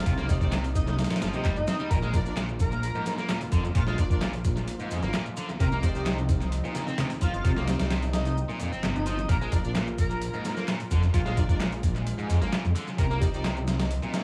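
Opening at once with a gritty, thumpy sampler-style drum kit up front, a lush pad pumping beneath and an airy, dreamy lead melody through tape echo, this raw, funky 130 BPM breakbeat excerpt in 4/4 adds a thick, menacing detuned saw bass, a bright overdriven guitar riff with vintage 12-bit grit, layered electronic shaker and handclaps, very quiet bongos and congas that stop at 9.3 seconds, and clear bowed string stabs in the background, moving between Cm and Bb with a short break at 8.4 seconds, a band accent at 8.8 seconds and vinyl crackle across an echo-heavy mix.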